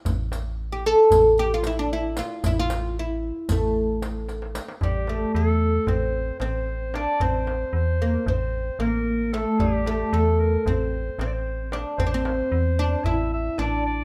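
This Turkish makam ensemble piece opens with a metallic, digital FM bass, a darbuka and a riq sounding together, and a fretless oud joins moments later. The music moves in 9/8 at 226 BPM, counted in eighths, with a straight feel. It is in A makam kurdi, tuned to A4 = 438 Hz, and its mood is longing and hypnotic. The plectrum-plucked oud carries the melody up front with a woody, double-strung tone. Beneath it, the bass has a fast attack and decaying notes, while the darbuka's metal shell gives a crisp, deep, saturated sound and the riq adds bright jingles. During a drum fill, the riq stops at 4.7 seconds, and at 4.8 seconds a bright, present clarinet enters in a classical style as a solo second line, all within light reverb in this section cut from a longer piece.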